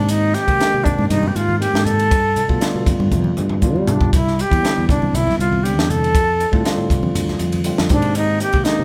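A lightly reverberant live-room sound frames this short, bright and funky slice of electric jazz fusion, cut from a longer piece, with chords moving from Abmaj9 through G9, Cmaj9 and F69. Up front, an airy, mellow silver concert flute carries the melody with expressive vibrato and a soft attack, beside a crisp, punchy fusion drum kit whose high-tuned snare and pumping small-room ambience drive a straight feel, marked by a drum fill at 3.1 seconds. A clean tine electric piano heard through a combo amp supplies the accompaniment, a round, dark fretless electric bass anchors the low end, and low-tuned congas played with soft hands sit in the background from 0.9 seconds.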